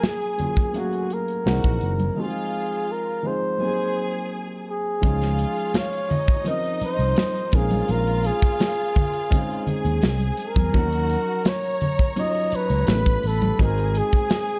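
A dark, lightly reverberant studio sound frames this smooth, cinematic stretch of lush 1970s-style soul in straight 4/4, cut from a longer piece. A breathy, whispered flugelhorn carries the melody up front over a rich, bowed string section on the second line, a mellow grand piano with audible action noise, a punchy, polished drum kit, and hard-handed congas sitting in the background. Fingered electric bass, amped and up front, enters at 1.5 seconds, a break runs from 2.2 to 5.0 seconds, and the harmony moves through extended chords such as Gbmaj9, Dbmaj9 and Bbm11.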